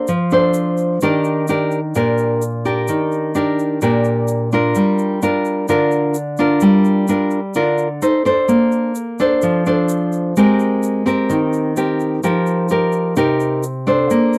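A full-bodied, fingerpicked nylon-string guitar sits up front in this breezy, sophisticated bossa nova fragment, moving through lush jazz harmony from a rootless Bbmaj9 and Ebmaj7 to Gm7, Cm69, Abmaj9 and a closing F9sus4. A grainy, bright egg shaker stays close and dry in the background from 0.1 seconds on. The sound has the dry, close feel of a 1970s studio with only light reverb, and the passage is cut from a longer piece.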